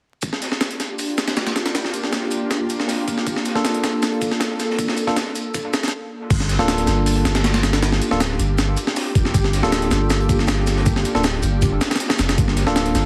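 Raw and frenetic, this drum and bass cut in G minor runs at 158 BPM. An up-front, gritty sampler-style breakbeat with a thumpy kick and high-tuned snare sits over a crunchy, dark acoustic break with shaker further back, while an ethereal, detuned pad holds a Gm7 chord. A bright, barky tine electric piano adds bell-like stabs with dub echo from 3.6 seconds, and after a brief stop at 5.9 seconds the drop lands at 6.3 seconds with a deep, thick saturated sub bass, the mix carrying a heavily compressed radio sound with vinyl crackle and light reverb.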